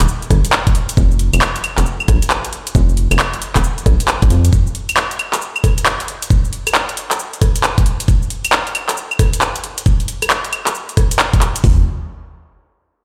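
A rubbery square-wave bass and an electronic garage drum kit of claves, handclaps, hi-hat, rim click and shaker open this soulful, bouncy two-step garage excerpt together, with a second layered kit of kick drum, toms and hi-hat joining moments later. The bass sits up front, hollow and resonant, with a dark filter pluck, a fast attack and sustained notes reaching down into the low register. It drops out at 4.5 seconds, leaving the two kits to carry the shuffled, swung groove, where the knocking kick and metallic hats stand out. Both kits are produced and placed up front, re-recorded in a small room. The first kit stops at 11.6 seconds, just as the bass briefly returns for a short closing passage. The whole track plays through a big sound system in a bare stone room with light reverb, giving it a stony, echoing ambience.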